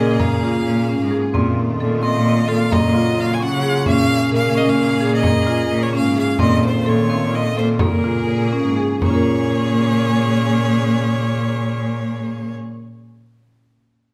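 Set in a wet recital hall, this urgent, hypnotic excerpt of contemporary chamber music in Bb minor moves in an uneven 11/8 at 258 eighths per minute, with a bright, focused solo violin carrying the melody over biting symphonic strings holding sustained chords, a nasal, up-front cello bass with vibrato and portamento, marimba arpeggios struck with medium hard mallets, and a hard-handed frame drum that stops at 9.3 s after the tempo slows between 5.2 s and 9.0 s.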